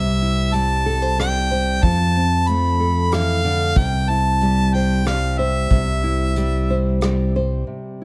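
Close, detailed microphones and light reverb frame this tender, nostalgic acoustic folk-pop ballad in 3/4 at 92 BPM in C major, where a clear, jazz-style harmonica solo with light vibrato and scooped notes sits up front over fingerpicked classical nylon-string guitar with fresh strings, a warm, direct fingered electric bass, and soft brush drums with a punchy kick, hi-hat and rim click entering at 0.5 seconds, as the chords move from C to F and back to C.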